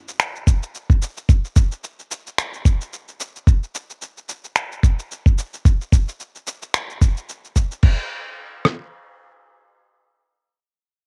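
A softly swung sixteenth-note groove opens this smooth, warm sunset chillout passage in 4/4. A gritty, overdriven sampler-style soul kit brings in crash cymbal, finger snaps and shaker up front at 0.1 s, and a compressed kick and rim click join at 0.5 s and carry on until 8.8 s. The dark digital ambience gives the short cut a dusty, late-day glow as it moves into a new section at 7.8 s.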